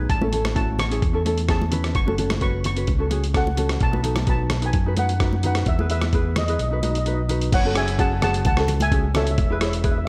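A shimmering steel pan carries the melody from the first moment of this festive, sunny calypso, its mellow tone struck with medium rubber sticks and trailed by tape echo, while a light, fingerpicked acoustic ukulele and a punchy, overdriven electric bass sit beneath it, the bass up front. A gritty, compressed sampler-style boom bap kit arrives at 0.1 seconds with a thumpy kick, hi-hat, rim click and crash cymbal, giving the straight feel a hard edge. From 0.2 seconds, close and dry congas played with hard hands add bright, damped accents in the background until they stop at 9.3 seconds. The chords move through A, F#m, B7 and E, and the kick and snare drop out from 6.6 to 7.5 seconds just before a new section opens on F#madd9. A light reverb rounds out the mix of this short excerpt.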